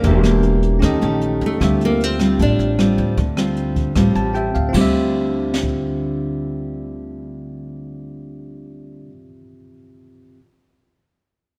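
Heard from the start in this intimate, melancholic bossa nova excerpt, an up-front fingerpicked nylon-string guitar plays classical-style accompaniment beneath a bright, fresh-stringed second nylon-string guitar carrying the melody, with finger squeak, until 4.3 seconds, while a barky, bell-like tine electric piano accompanies and adds a fill at 4.0 seconds, a woody, thumpy pizzicato upright bass holds the low end, and a small-room jazz brush kit with dark cymbals, a high-tuned snare and a boomy kick plays until 5.7 seconds, set in light reverb.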